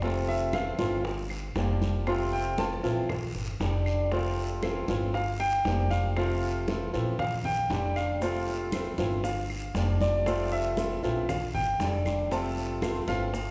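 Relaxed and danceable, this Cuban son and guajira groove moves at 117 BPM in 4/4 in F major, cycling through Fmaj7, Gm7 and Bb6. A clear, open concert grand piano takes the solo with high arpeggios over a boxy, fingerpicked swing-style acoustic guitar and an up-front pizzicato upright bass with a woody tone; raspy guiro and very quiet claves add texture, while congas struck with hard hands and tight, high-tuned bongos sit in the background. Grainy maracas join at 8.2 s, and a recital hall reverb lends the whole piece a churchlike sense of space.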